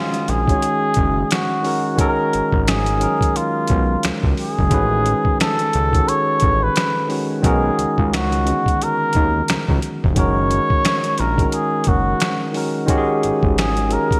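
Relaxed and soulful, this 14.2-second neo-soul and R&B excerpt in F# major sways at 88 BPM with a 16th-note swing, as a veiled, cup-muted trumpet sings a mellow jazz-style melody with light vibrato over a barky, clean tine electric piano through a combo amp, a gritty, pitched-down boom bap sampler kit with thumpy kick, finger snaps, hi-hat, snare and gated reverb, and a fat, detuned sawtooth analog bass with a filter sweep, all moving through F#maj9, Amaj9, Bmaj9 and F#add9 inside a lush hall reverb and bright 1980s-style digital sheen.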